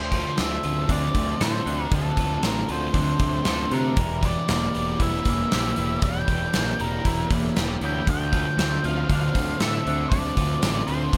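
A short cut from a longer piece, this 11.2-second recording sits in a moderate booth ambience with a brief decay, while a polished, gated 80s drum kit stands up front in a bright stone-room sound, its tight kick, medium-tuned snare and hi-hat arriving at 0.1 s. The track is hazy, melancholic shoegaze and dream pop rock in D minor, moving at 117 BPM in a straight 4/4. Over it, an octave-fuzz lead guitar carries the melody between A4 and G5, its dark, distorted tone trailed by digital delay. Behind it, a thick fuzz guitar with analog chorus and a crunchy overdriven guitar bathed in reverse reverb each play a riff. A clean, compressed, twangy electric guitar adds chorused, delayed arpeggios, and an overdriven fuzz picked bass with a direct-and-amped warmth anchors the low end. The harmony moves from Dm7 to Edim at 4.0 s and back to Dm7 at 8.1 s.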